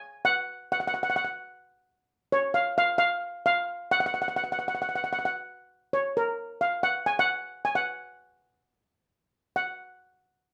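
A straight 4/4 calypso pulse at 132 BPM carries this short, festive fragment in F# major, tuned slightly low at A4 = 438 Hz. A lone steel pan plays throughout, a lead pan struck with soft rubber sticks, sitting up front and ranging from A#4 to G#5. Its tone is metallic and shimmering yet mellow, giving the bouncy line a gentle, rounded glow rather than a brittle edge. The playing shifts into a new section at 5.9 seconds, and the passage runs until 9.8 seconds, cut from a longer piece. A moderate studio reverb lends the pan a touch of space while keeping it close and clear.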